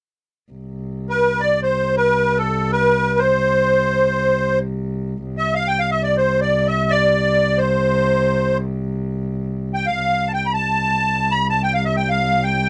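A reedy, shimmering musette accordion carries the melody from 1.1 seconds in this passionate Arabic excerpt in maqam rast on C, sitting up front and ranging from A4 to Bb5+50c. Beneath it, a single bowed cello holds a dark, woody drone on C2 from 0.5 seconds, played sul tasto with light vibrato, unfolding in free time. The dry, close 1970s-style studio sound carries a touch of light reverb.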